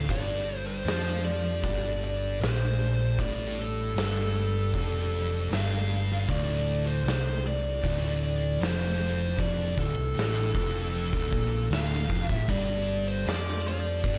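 Dark, warm studio production with light reverb frames this hypnotic, brooding stoner and doom metal passage. A fuzz lead guitar carries the melody over a pair of thick fuzz rhythm guitars churning a riff in the background, while a growly, overdriven picked bass sits beneath and a very quiet tonewheel organ holds sustained chords with key click and slow rotary swirl. An oversized low-tuned drum kit with a punchy kick, medium-tuned snare, hi-hat and a gritty, rolled-off top booms in a bright stone room from 0.1 seconds as the harmony moves from G5 to Dm and back.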